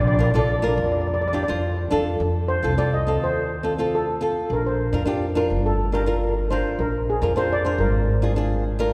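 A shimmering steel pan, a double seconds played with soft rubber sticks, carries the melody through this festive, carefree calypso, cut from a longer piece. Its tone is mellow and dark, sitting up front in the mix, and from 2.2 seconds it takes a solo over the rest of the trio. An upright bass plays pizzicato with a woody, steel-strung sound. A fingerpicked flamenco guitar, with audible finger squeak, enters at 0.2 seconds to fill out the accompaniment. The harmony moves from Bb to F7, back to Bb and then to Bb7 in a straight 4/4, and the whole trio sits in a lush church reverb with a long, spacious tail.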